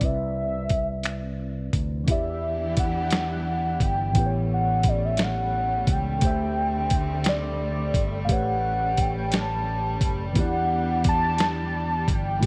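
Lightly reverberant, this slow, sultry 6/8 R&B excerpt in E minor at 58 BPM sets a late-night mood with a velvety, chorused synth lead carrying the melody over a worn, slightly out-of-tune tine electric piano, a warm fretless electric bass and an up-front, gritty sampler-style drum kit of finger snaps, hi-hat, thumpy kick and snare, while a lush bowed string section enters at 2.1 seconds with sustained chords beneath the Em9, A13, D7sus4 and A9 changes.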